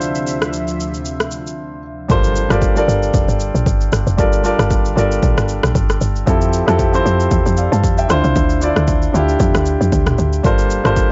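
A woody, punchy log drum bass with a fast, decaying attack enters at 2.1 s and anchors this hypnotic, late-night amapiano excerpt in G dorian at 115 BPM, with a swung 16th-note feel. A warm, up-front concert grand piano with deep lows plays a filtered accompaniment over Dm9, Gm11 and Fmaj9, beside a layered electronic drum kit of punchy kick, rim click, shaker and toms. A smooth, detuned sawtooth pad with chorus and sidechain pumping fills the filter-swept opening through a brief break, then returns at 10.4 s, while a very quiet impact marks the drop; the whole is a dry, gritty recording with a dulled top end.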